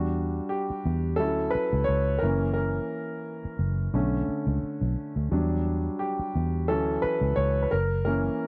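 A concert grand piano and a muted electric bass open together in this short cut from a longer piece of lush, 1970s-style soul, unfolding at 88 BPM in 4/4 with a gentle swing on the sixteenths. The mood is cinematic and silky, set in E dorian with the tuning pitched slightly low at A4 = 439 Hz. The piano carries the solo, its warm tone natural and deep in the bass, sitting up front as it moves through Em7, Dmaj7, F#7 and Bm9 before circling back to Em7, Dmaj7 and F#7. Beneath it, the fingered bass sounds dark, round and amped, its foam-muted attack placed close in the mix and reaching down to F#1. The bass drops out at 8.3 seconds, leaving the piano alone until the cut ends at 8.5 seconds. The recording has the dry, close feel of a 1970s studio.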